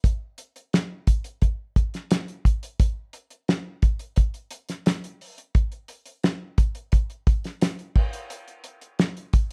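A cloth-damped, thuddy acoustic drum kit opens this short indie pop excerpt, playing alone at 87 BPM in a straight 4/4. The mood is hazy and laid-back, and the kit sits up front with a dry, smooth character and a rolled-off top end. A fat snare and a tight kick anchor the groove, while hi-hat and crash cymbal add a dark shimmer. At 2.8 seconds the pattern moves into a new section that carries on until the cut at 9.5 seconds. A light reverb gives the close, intimate sound a touch of space.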